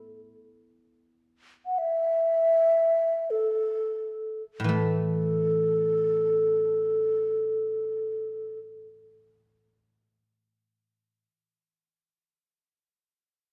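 Festive yet graceful, this short passage cut from a longer Chinese traditional chamber piece unfolds in free time, easing into a slower pace over its first 4.7 seconds. A guzheng, played with fingerpicks, carries the accompaniment from the opening to the close at 11.3 seconds, its warm, silvery, ringing strings set up front and moving through the low and middle register. At 1.7 seconds a low xiao enters with the melody, its end-blown bamboo tone mellow, airy, hollow and straight, with a soft attack and a close, intimate presence up front. The xiao sings above the guzheng until 8.6 seconds, as the music passes from its opening section into a second one at 4.7 seconds. A generous recital-hall reverb surrounds both instruments, lending the ensemble a spacious, resonant glow.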